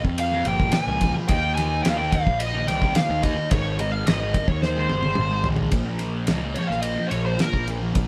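A moderately reverberant room sound frames this short, dark and mysterious cut of psychedelic rock, captured as a band playing live together at 108 BPM in a straight 4/4 and Bb dorian, tuned slightly flat of standard pitch. A damped 70s acoustic drum kit sits up front with a dry, smooth character, dark cymbals, a fat snare and a tight kick, working across kick, ride, snare and toms, with a drum fill from 4.6 to 5.7 seconds. Beneath it, a picked electric bass with overdriven fuzz, heard both direct and amped, holds the low end up front. A double-tracked fuzz guitar played through distortion and phaser carries the riff over chords moving from Bbm through Eb5 and Ab. A compressed, picked lead guitar, soaked in fuzz, distortion and wah, sings the melody and breaks into a solo at 5.7 seconds as the harmony lands on Bb5.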